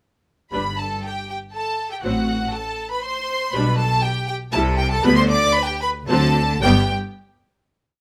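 A quick classical-period movement for string orchestra in G major, this short complete piece moves at 118 BPM in a graceful, cheerful 3/4 with uneven beats and a rubato feel. Up front, a clear violin section carries the melody with smooth, even vibrato, while a second, more distant violin section with a rich tone doubles the tune an octave below. The violas fill the middle with a lush, warm mix of short accented chords and sustained chords, and the cellos play bass on the beats and sustained bass with a focused, smooth-topped sound. Close and full, the double basses double that bass line an octave down, all five sections playing together from 0.5 to 6.9 seconds. The harmony moves through G, F#dim over A, G over B, C, G over D and a cadential D7 before settling on a final G chord at 6.6 seconds, all set in a light reverb.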